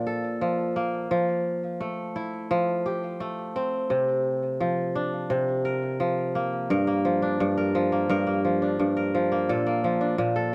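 Lightly reverberant, this delicate, playful folktronica fragment features a solo acoustic kora, fingerpicked up front with a bright, ringing tone and a touch of digital delay, moving through Bbmaj7, Fmaj9 and C9sus4 before shifting at 6.7 seconds to a second section built on Gm7 and returning to Bbmaj7.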